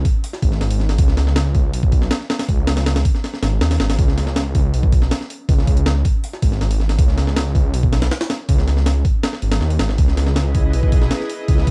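A thick, menacing detuned saw bass opens this frenetic, dark drum and bass excerpt with jungle roots, joined almost at once by a gritty, pitched-up breakbeat kit with a thumpy kick and high-tuned snare, both sitting up front in a dry, shadowy mix before an airy, breathy pad with chorus drifts in softly at 10.1 seconds.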